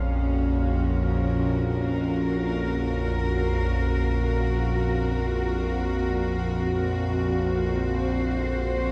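In free time, this dark ambient drone fragment hangs ominous and unsettling on a Gb chord over Bb, tuned to A4 = 441 Hz. Up front, a detuned analog drone of sawtooth and pulse waves evolves in the low register through chorus and phaser, while an intimate chamber cello section bowed sul tasto holds soft-attacked chords with light vibrato. Further back, a mellow, resonant stepped-filter texture bubbles on a high F, and the whole piece is bathed in a huge ambient reverb with a dark, warm production.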